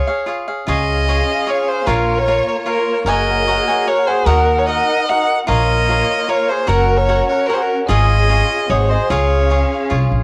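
Proud and romantic, this mariachi-style Mexican folk excerpt in 3/4 at 150 BPM in Db major sets a rich, focused solo violin with vibrato and cassette-tape coloring up front on the melody, over a bright, crisp picked cavaquinho accompaniment, a lush bowed violin section sustaining chords from 0.6 seconds, a dark, distant trumpet on a classical-style second line in the background, and a woody pizzicato upright bass on the low end, heard as a home cassette recording with light reverb.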